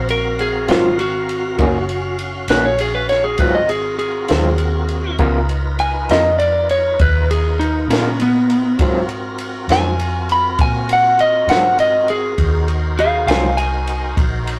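A rough rehearsal-room recording with tube saturation and moderate reverb carries this soulful, rollicking slow blues in 12/8 at 67 BPM in Ab mixolydian, where an up-front, compressed, slightly broken-up electric slide guitar played with fingerpicks solos throughout over clean, full tonewheel organ chords with chorus vibrato and slow rotary speaker, a round, foam-muted vintage electric bass, a dark, rolled-off compact cocktail drum kit with a high-tuned snare and punchy kick, and a twangy, lo-fi picked guitar through a small old amp with tremolo that enters at 0.7 seconds, all moving through Ab13, Ebm7 and Db13 chords.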